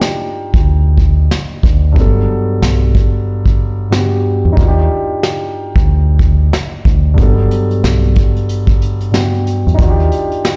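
Boom-bap hip-hop at 92 BPM in G major, with a confident, warm mood and a swung sixteenth-note feel, cut from a longer piece that opens on a break running to 7.2 s. A vintage brush kit with a punchy kick, medium-tuned snare, hi-hat and rolled-off top sits up front, joined at 0.5 s by a round, amped dub electric bass, while a mellow, intimate grand piano with audible action noise moves between Ebmaj9 and Gmaj9. The sound is close and dry, carrying only a faint stone-room character from a bare space.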